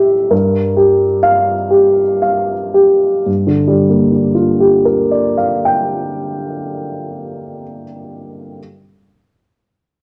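Reflective and melancholic, this short excerpt of neoclassical minimalist piano moves in a rubato 6/8 at roughly 37-46 BPM in G minor, tuned to A4 = 441 Hz, and slows through its opening 3.3 seconds, with a Gm7 chord sounding at 0.3 seconds. A lone upright piano, dark, mellow and woody with a natural, up-front presence, spans G2 to G5 from 0.0 to 8.6 seconds. A second passage begins at 3.3 seconds, and a wet, large studio reverb lends the playing a sense of space.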